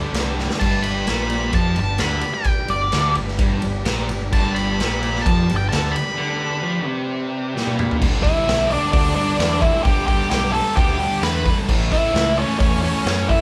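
A thick, double-tracked fuzz guitar riff, a dark octave-fuzz lead melody, reedy heavy-vibrato combo organ chords in the background and a growling, overdriven picked bass open this raw, swaggering garage rock excerpt at 130 BPM in G major, played live in one room with light reverb and a punchy, gritty drum kit up front in a bright stone room, before a break from 6.2 s topped by a transistor organ fill, after which the organ stops at 8.0 s and the band drives on in G lydian until the cut at 13.4 s.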